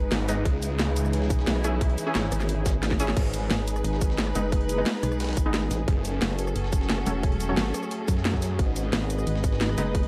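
A straight 4/4 groove drives this mechanical, aggressive slice of dark technical drum and bass, cut from a longer piece that sits in a drop throughout. An overdriven electronic kick with a tight punch sits up front alongside a layered drum and bass kit of cracking snare, bright hats, rim click, shaker and crash, while a very quiet, gritty breakbeat sampler-style kit with a tape-warm, medium-tuned snare adds grain underneath, and a drum fill arrives at 2.8 seconds. The low end pairs a pulsing, heavy pluck wobble bass with chorus and a snarling, growling saw bass, saturated and overdriven, which cuts in and out, dropping away at 3.5 seconds before returning at 5.9 seconds. Above, a lush, bowed symphonic string section holds sustained chords with vibrato, pumped by sidechain, as a warbling, nostalgic, lo-fi pad drifts in the background with chorus and its own reverb. A bold, punchy orchestra-hit-like synth stab with ring modulation, a filter sweep, cassette tape colour and delay flashes through the background. 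The chords move from C#m through G#m and F#m back to G#m, all set in a light digital ambience.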